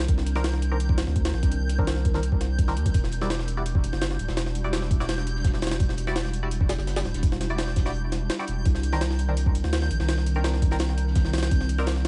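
Atmospheric and frenetic, this drum and bass/jungle excerpt at 168 BPM in E minor pairs a gritty, pitched-up, overdriven sampler-style kit with its thumpy kick and high-tuned snare, a deep, thick saturated sine sub bass up front, an ethereal, airy pad with ensemble chorus and reverb sitting mellow in the background, bright, nasal band-passed sawtooth chord stabs with phaser and dub echo entering at 0.4 seconds, a dreamy reversed granular texture swelling in the background, and a very quiet, dark, rolled-off breakbeat kit joining at 2.9 seconds, all over vinyl crackle as the chords move from Cm9 to Em9 and back.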